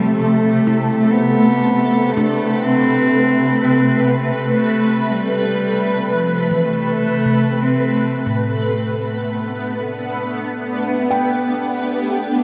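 A bowed cello, played by one player sul tasto with a soft attack and a pure, floating tone, carries the melody up front between F3 and C4, its line trailing into a diffuse ambient delay before it stops at 8.1 seconds. This reflective, melancholic ambient passage, cut from a longer piece, moves at 60 BPM in a straight 4/4 over a rootless Fmaj7. A shimmering, ethereal pad sustains chords throughout, its detuned sine voices and octave-up shimmer given a bright, granular sheen by chorus, phaser and built-in reverb, with slow attacks and long releases. Beneath them, a handpan of nitrided steel, struck with soft fingertips, plays ringing, meditative arpeggios across a broad range, sitting lower in the mix with its own diffuse delay and fading in across the full 12.4 seconds. A huge, wet reverb with a 9.4-second decay surrounds the whole scene.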